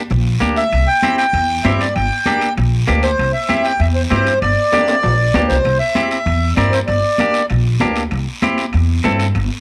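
A woody, pizzicato upright bass and a raspy guiro open this fiery, passionate cumbia excerpt at 195 BPM, soon joined by a twangy, compressed clean electric guitar and bright, high-tuned congas set distant in the background over an alternating Gm and C progression. At 0.6 s a reedy, up-front accordion with slow beating takes the melody, its tone and the guitar's both carrying a cassette-tape colour, while ringing, band-limited metal-shell timbales sit behind. A drum fill arrives at 4.7 s, the accordion drops out at 7.5 s, and the rest of the band carries on in a homemade cassette recording with light reverb.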